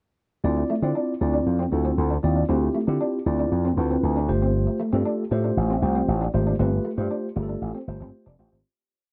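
A dry, close 1970s-style studio sound frames this danceable, late-night funk piece at 117 BPM in D dorian, where a punchy, bright slap bass through an envelope filter plays a fat syncopated boogie line with chromatic approach notes, a mellow tine electric piano adds clean syncopated drop2 chords with grace notes over Dm9 moving to G9sus4 at 4.3 seconds, and from 0.6 seconds a twangy, slightly broken-up electric guitar with ensemble chorus plays a fingered, muted single-note riff before the whole short piece fades out from 6.6 seconds.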